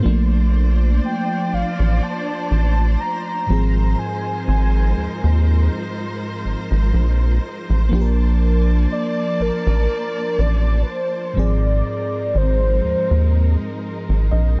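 A rubbery, hollow square bass sits up front in this slow, tender R&B excerpt in Bb major at 61 BPM, its dark, bouncy tone anchoring a gently swung groove that moves between Bbmaj7 and Ab6. A lush, dreamy FM electric piano with a soft pad layer provides accompaniment, and a studio string section with vibrato and portamento holds sustained chords throughout, while from 1.1 seconds a velvety synth lead with chorus and vibrato carries the romantic melody. The electric piano closes with a fill from 13.8 seconds, all set in a digital ambience.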